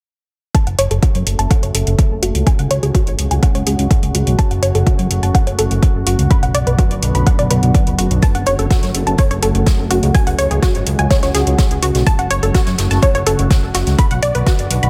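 A straight 4/4 pulse at 125 BPM from a deep, overdriven electronic kick up front and metallic overdriven hi-hats drives this dark, dramatic melodic techno excerpt in F# minor, where a fat, detuned sawtooth bass pumps against the kick under a filter sweep, lush punchy unison pluck arpeggios with dub echo and their own sweep ride above a morphing, warbling wavetable pad with phaser through F#m, C#sus4 and Bm, a very quiet mellow analog drone on F#2 enters at 2.2 s, and an airy acoustic street-band kit with high-passed hi-hat and snare slips into the background at 8.2 s, all in light digital ambience.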